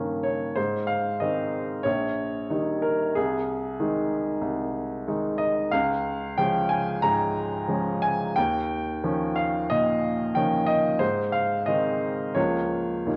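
A worn, warbling old cassette tape carries this recording, its pitch drifting as a moderate recital-hall reverb gathers around the notes. This romantic character piece for solo upright piano is passionate and warm, moving in four with an uneven, rubato sway that lets the beats stretch and give. The piano sits up front, with a clear, woody tone and a polished touch, spanning from Bb1 up to Bb5. The harmony opens on Eb7/G and settles onto Ab, passes through Db and Eb9, and comes home to Ab around 11.0 s before turning toward Bbm/Db. This 13.2-second passage is cut from a longer piece.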